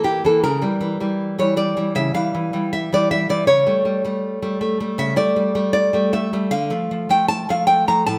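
A fingerpicked nylon-string guitar, warm and up front with audible finger squeak, plays alone through this 8.2-second excerpt of a melancholic, passionate romantic classical piece in 4/4 at a rubato 78 BPM, ranging from A2 to Bb5 as it moves from C#dim7 through A7/C# to a rootless Dm, all set in a wet stone-room reverb with a 1.4-second decay that gives it the feel of a live performance.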